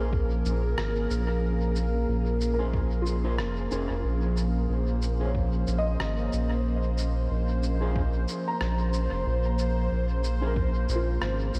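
Soaked in lush hall reverb and vinyl crackle, this deep, spacious ambient dub excerpt drifts on a pure, calm organ-like pad holding sustained chords through ensemble chorus. Up front sits a round, dark analog bass, beneath soft arpeggios from a felt-muted upright piano with tape echo and mellow electric guitar stabs with dub echo that stop at 10.5 s, both placed in the background. A bubbling, resonant stepped-filter texture with chorus enters at 0.2 s, while a muffled, thumpy, pitched-down electronic kick and an electronic cabasa and rim click, the latter carrying dub echo, supply the beat.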